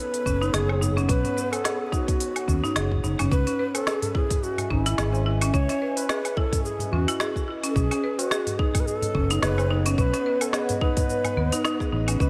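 A low wooden flute carries the melody with an airy, tongued chiff and expressive vibrato, trailed by delay and shimmer reverb, in this hypnotic, earthy organic downtempo excerpt at 108 BPM with a gentle 16th-note swing, moving from Badd9 to C#m7 and back at 7.8 seconds. Beneath it, a buzzing marimba struck with hard mallets plays dry, woody arpeggios, while a warbling, lo-fi pad holds detuned chords that pump against the beat, and a faint wind-like noise layer drifts in only between 0.7 and 3.3 seconds. A round, dark fretless bass and a tight kick sit up front, joined by an electronic kit with a woody snare, smooth hats, shaker and woodblock, plus a low-tuned, ringing tabla in the background.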